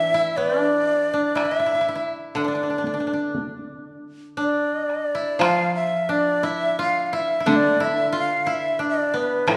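A breathy, end-blown bamboo shakuhachi carries the melody with vibrato and a soft attack, close up front, over two fingerpicked koto parts: a woody, dry second line also near the front and a lower accompaniment beneath it. This austere, solitary piece of Japanese chamber music moves in a rubato 4/4 around 60 BPM in D kumoi tuned to A4 = 441 Hz, and a taiko ensemble struck with hard sticks enters at 1.4 s, its sound taken from a small room. The whole sits in a moderate recital-hall reverb, with the passage turning to new material at 5.4 s before this cut from a longer piece ends at 9.6 s.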